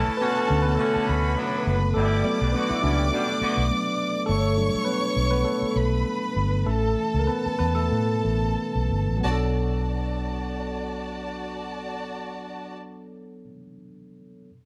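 Lush 1970s-style soul in B minor, bittersweet and cinematic, moving at roughly 87-103 BPM with a gentle sixteenth-note swing through chords from Bm9 to Gmaj7, Gmaj9#11 and Aadd9 before returning to Bm9 at 9.2 seconds. A worn, slightly out-of-tune tine electric piano with subtle chorus sits up front and takes the lead until 9.2 seconds, slowing down from 4.3 seconds, while a round, foam-muted fingered electric bass anchors the low end and a smooth, bowed string section with vibrato carries a second line. A distant, roomy horn section adds tight, soft-attack stabs only in the opening 3.6 seconds, and a dark, clean electric guitar riff slips in briefly in the background, all within light reverb in this fragment cut from a longer piece.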